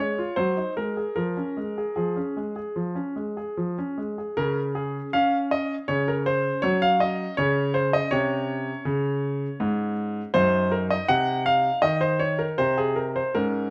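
Classical-period piano sonatina in D-flat major, elegant and graceful, moving at a gently flexible 74-82 BPM in 4/4 with rubato and tuned to A4 = 443 Hz. A clear concert grand piano plays alone and up front throughout this 13.7-second excerpt, its natural tone resting on a deep bass and spanning Gb2 to Gb5. A moderate stone room reverb gives the piano a sense of space, and the opening phrase returns at 4.4 seconds before the passage is cut from the longer piece.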